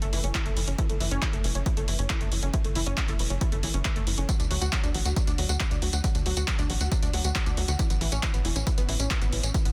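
Soaring and euphoric, this uplifting trance excerpt at 137 BPM in F# minor moves from F#m7 to D to Aadd9, with a detuned, chorused analog pluck playing delayed, pumping arpeggios over a tight, dark sawtooth sequencer bass that pumps with the sidechain, while layered electronic handclaps, hi-hat and tambourine ride alongside an overdriven, punchy kick that enters at 0.3 seconds, all in a dry, dense and heavily limited modern mix.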